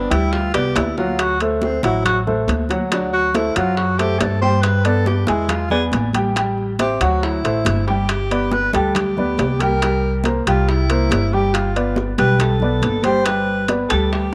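Afro-Cuban jazz in G major at 139 BPM, this sunny, lively fragment of a longer piece features a breathy, whispered tenor saxophone soloing with vibrato and scooped notes over polished upright piano, woody pizzicato upright bass, ringing close congas, tight high-tuned bongos very quiet in the mix, and metal-shell timbales, with drum fills at 0.5 and 7.7 seconds, all set in a moderate spring reverb.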